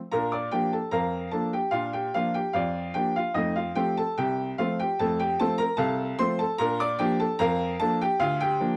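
Bathed in a moderate spring reverb, a woody, up-front upright piano plays alone in this cheerful, lively ragtime fragment in Bb major, moving at 74 BPM in a straight 2/4 across a range from C2 to D6, its harmony shifting from Bb to F at 3.4 seconds before settling back on Bb and Bb/D.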